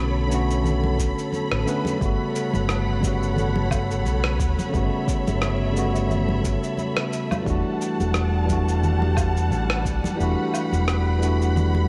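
This short cut from a longer piece sounds as if it were played back from a worn cassette, with warbly pitch drift and old-tape wobble wrapped in light digital reverb. It is a smooth sunset chillout groove in 4/4 with a swung sixteenth-note feel and a warm mood. A clean tine electric piano, up front through a combo amp with delay, carries the chords from Bm9 to Gmaj9#11 and on to Em11, while a dark, woody studio string section sits distant behind it with vibrato and lush bowed sustain. A round, amped fingered electric bass anchors the low end, joined by a deep, layered electronic kick with overdrive that enters at 1.0 seconds and drops out at 10.2 seconds. Gritty, sampler-style cabasa, rim click and woodblock, compressed and re-recorded in a small room, mingle with acoustic congas played with hard hands in the background.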